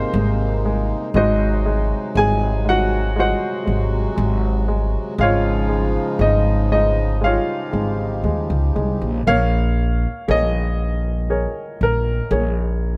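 Acoustic folk-pop ballad with an intimate, melancholic mood, where a clear, polished upright piano carries the melody up front over a woody, thumpy pizzicato upright bass on gut strings, while a reedy, breathing hand-pumped harmonium holds sustained chords until 9.2 s, all captured dry and close with detailed microphones in a cut from a longer piece.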